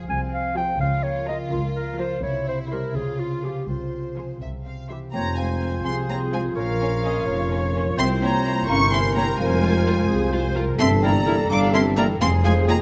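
A lush studio string section opens this cinematic fragment in F minor: the violins carry a vibrato-rich melody in the background while a second, closer violin line and the smooth violas fill out the harmony, and a ringing concert harp plays arpeggios behind them. Almost at once a mellow solo clarinet adds its own line, the dark, woody cellos and the soft-attacked double basses settle into the low register, and the music moves at 84 BPM in a straight 6/8 with a magical, mischievous mood. At 5.1 seconds the texture blooms: a delicate, bell-like celesta takes up the melody, a silvery, distant flute with a crisp attack and a gently vibrato-touched oboe add second lines, a French horn section holds sustained chords in the background, and a mellow tuba joins the bass register. The chords move from F minor through B-flat minor and C7 and touch a diminished colour before returning home near 12.2 seconds. 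Close, detailed microphones and light reverb give the orchestra an intimate, polished studio sound in this short passage cut from a longer piece.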